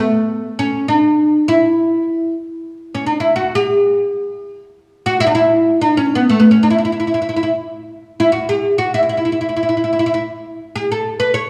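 Stately and passionate, this short Arabic passage, cut from a longer piece, features a solo oud that sounds mellow, woody and deep, with its plectrum-plucked double strings placed up front in a small room and bathed in a wet recital-hall reverb, shifting into a new section at 2.7 seconds.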